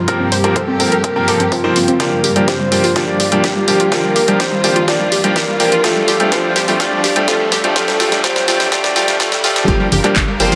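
Drenched in lush hall reverb, this bittersweet, expansive progressive house excerpt in G minor at 125 BPM builds for 9.7 seconds as a filter-swept analog pluck arpeggiates alongside a soft, octave-layered synth lead with chorus, phaser and tape echo. Dark symphonic strings pump with sustained chords, a clear baby grand piano stabs up front, a house drum kit with cracking snare, handclaps, hi-hat and rim click sits over a punchy electronic kick, and a riser and drum fill gather. At 9.7 seconds a plucky analog bass arrives, followed by brilliant congas and cowbell and, at 10.4 seconds, a warm violin section.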